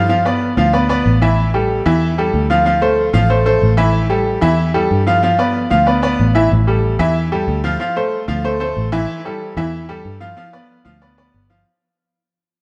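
A wet plate reverb with a long 2.6-second tail surrounds this short salsa cut, taken from a longer piece, and the players sound as if heard from further back in the room. It moves at a driving 187 BPM in straight 4/4, in A minor, with a passionate, fiery mood. A bright upright piano carries the accompaniment throughout, brilliant and woody, with audible action noise that gives it an intimate, polished presence up front. Beneath it, a fingered electric bass holds the low end with a dark, round, foam-muted tone that feels direct and amped. The harmony cycles through G7, A5 and Dm7, and from 6.5 seconds the second half of the passage fades out until it ends at 11.7 seconds.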